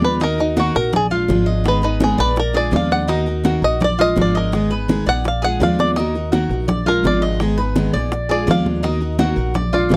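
A straight 4/4 pulse at 167 BPM drives this sultry, nostalgic slice of Cuban son and guajira in Eb harmonic minor, its harmony cycling through Ebm, Bb7 and Abm. A twangy, fingerpicked bluegrass banjo carries the melody up front, playing a solo across the whole 10 seconds, while a bright, jumbo-bodied steel-string acoustic guitar picks the accompaniment beneath it. A Cuban tres adds picked arpeggios with a metallic shimmer from its doubled strings. An up-front upright bass with gut strings gives a dark, woody, thumpy pizzicato foundation. Ringing, high-tuned congas sit in the background alongside round, low-tuned bongos played with soft hands, which join at 0.2 seconds, all captured in a dry, close 1970s-style studio sound with light reverb.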